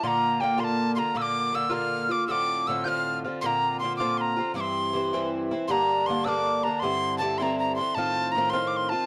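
Cheerful and lively, this short cut from a longer Celtic folk piece moves in a brisk 6/8 at 106 beats per minute, counted in dotted quarters, with a straight feel in C mixolydian. A breathy metal tin whistle carries the melody high in its register, its crisp attack and audible chiff giving each note a clear start, while vibrato colours its warm tone. Underneath, an Irish bouzouki plays a picked accompaniment, its doubled strings ringing with a metallic shimmer. Both instruments sit up front and play together from start to finish, running through a phrase that is heard twice, with the repeat starting at 5.7 seconds. The harmony moves through Bb, F6 and C before turning to G minor and settling on F7, all wrapped in a dark, warm production with a moderate small-room reverb.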